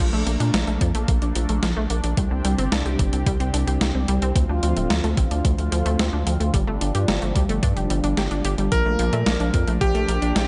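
A silky analog string pad, a detuned sawtooth pluck and a round, deep analog bass open this nostalgic, nocturnal synthwave passage together, taken from a longer piece. The pad holds soft-attack chords with ensemble chorus, vibrato and sidechain pumping, while the pluck spins bright arpeggios through chorus and tape echo, and the mellow bass sits up front. A clean 12-bit drum machine joins at 0.3 seconds with hi-hat and a medium-tuned snare bathed in gated reverb, and a thumpy, tape-toned electronic kick arrives at 0.8 seconds. The straight groove moves through Bbmaj7, Csus2, Dm7 and Gsus2 before circling back to Bbmaj7. At 8.7 seconds a cutting, vintage electric grand piano steps forward with a brief, bright melody carried on tape echo, all set in a light digital ambience.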